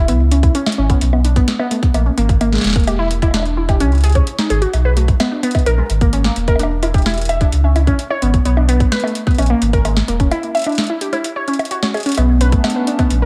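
Echo-heavy and lightly reverberant, this eerie, glitchy IDM excerpt at 129 BPM pairs a warbling, lo-fi pluck playing arpeggios through chorus, phaser and analog delay with a round, up-front sub bass, a tight electronic kick, and an analog drum machine of bongos, metallic hi-hats and a punchy snare, moving between C#5 and A#7(no3) chords before a break at 10.3 seconds and a detuned, nostalgic tape-like pad with 12-bit grit entering at 12.4 seconds on a Bm9 chord.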